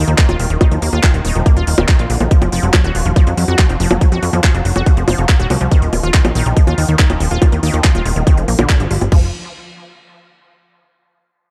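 Alien and driving, this psychedelic trance excerpt at 141 BPM sits in a drop where a tight, up-front electronic kick and a tape-warm garage kit of bongos, crash cymbal, handclaps and crisp hats drive a funky, wave-folded analog bass while a lush, detuned unison pluck riff with sidechain pumping and dub echo cycles over Eb5 and F5 chords in a dark, dry production, before the chords stop at 9.1 seconds and the parts fall away moments later.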